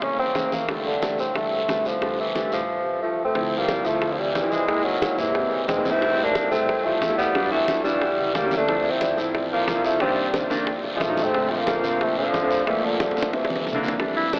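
An up-front bassoon with light vibrato carries the melody through this lively, sunny excerpt of Afro-Cuban jazz at 180 BPM in F major, joined at 3.0 seconds by a breathy, whispered tenor saxophone with scooped notes on a second line, both trailing diffuse ambient delay, over warm concert grand piano, a woody, thumpy pizzicato upright bass in the background, tight high-tuned bongos, low-tuned thick-skinned congas and a raspy guiro, all in a dreamy, reverb-soaked mix with an AM radio sound and a drum fill from 13.0 to 14.0 seconds.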